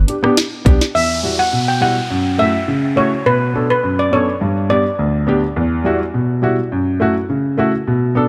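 A straight 4/4 dancehall pulse at 104 BPM opens this tough, bouncy piece, with a tight kick, sharp snare, rim click and metallic hats from an up-front electronic kit alongside a thick, saturated sub bass, both stopping before the first second is out. A dark, worn grand piano with audible action noise and sidechain pumping carries the chords through to 8.3 seconds, moving through G, Emadd9, F#m7 and Bm7. At 0.9 seconds a shimmering steel pan lead, struck with hard rubber sticks and treated with tape echo, plays until 4.8 seconds over an electronic downlifter, set in a light digital ambience.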